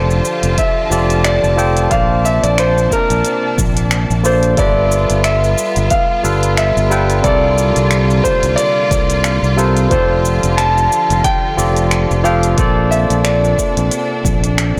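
A blown-out, overdriven recording bathed in moderate plate reverb carries this blissful, relaxed sunset chillout excerpt in F major at 90 BPM with a 16th-note swing, where an intimate concert grand piano with audible action noise sings the melody through digital delay over a barky tine electric piano, also delayed, a clear symphonic string section holding smooth bowed chords with light vibrato, an up-front fingered electric bass with tube saturation, and a deep house kit of finger snaps, smooth hats and shaker with soft clipping on the snare joined at 0.6 s by a punchy electronic kick, all moving through F6, Bbmaj9, G13 and C13sus4.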